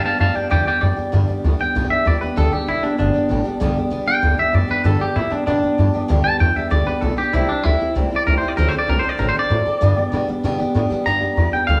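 A straight 4/4 pulse drives this rollicking, retro rockabilly cut at 193 BPM in G major, taken from a longer piece. A twangy, clean electric guitar carries the melody up front, breaking into a solo at 1.1 seconds that runs to the end at 11.8 seconds. Beneath it, a picked steel-string acoustic guitar with a jumbo, full-bodied tone and old strings fills out the accompaniment, while a pizzicato upright bass with gut strings adds a thumpy, woody low end. The harmony sits on G before moving through C and D7 and returning to G near the close. The trio sounds like a band playing live in one room, bathed in a wet, large studio reverb.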